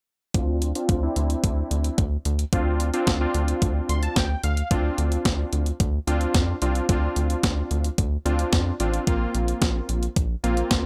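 Nocturnal and melancholic, this synth-pop passage is cut from a longer piece and moves in a straight, steady four. Round, detuned sawtooth keys carry the accompaniment with a chorus shimmer and a low-pass filter sweep through the opening stretch, and they play a short fill from 3.6 to 4.7 seconds before the second section begins. Underneath, a rubbery square-wave bass gives a hollow, bouncy pluck with a quick attack and a dark, resonant decay. A clean 12-bit drum machine with a sampler-style character supplies a thumpy kick, a medium-tuned snare and hi-hat, its sound overdriven and re-recorded in a small room. The harmony rests on Dm7 and shifts to Bbsus2 at 9.1 seconds. The whole mix sits up front in a dry, gritty hardware recording touched by digital ambience.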